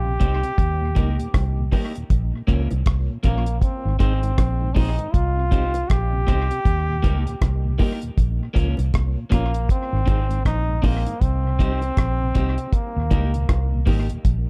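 A brilliant, punchy trombone opens this meditative roots reggae passage at 79 BPM, carrying the solo melody in a present, pop-style voice with light vibrato, dub echo and plate reverb, while a vintage foam-muted fingered electric bass sits up front with a round, amped tone. A deep reggae drum kit and low-tuned bongos come in at 0.2 seconds: the kit is dry and smooth with a tight kick, hi-hat and rim click and a rolled-off top, and the bongos, struck with hard hands in a small room, stay very quiet. A mellow tonewheel organ hovers in the background, clean and dark, turning through chorus vibrato, a slow rotary speaker, tape echo and plate reverb. An electric guitar at the edge of break-up adds warm, picked, compressed accompaniment, sent through its own dub echo and plate reverb. The serious mood rests on a cycling Cm, Eb, Bbm, Ab progression over a lightly swung 4/4. The dark production, a short cut from a longer piece, ends with the bass and drums sounding last at 14.5 seconds.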